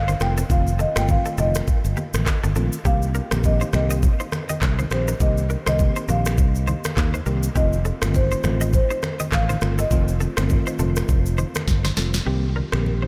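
Marimba melody with tape echo and fingered electric bass open this mellow, sultry afrobeats excerpt at 102 BPM, swinging lightly on the sixteenths, as the woody marimba sits over a warm, up-front bass while harmony moves between F7 and Cm7. A produced afro-pop kit with a knocking kick, sharp snare, rim click, shaker, finger snaps and handclaps joins alongside very quiet, low-tuned congas, a bell-like tine electric piano, and a twangy, compressed clean guitar riff tucked in the background with analog chorus and tape echo. The marimba stops at 11.6 seconds, just before a drum fill from 11.7 to 12.3 seconds, all set in light reverb and digital ambience.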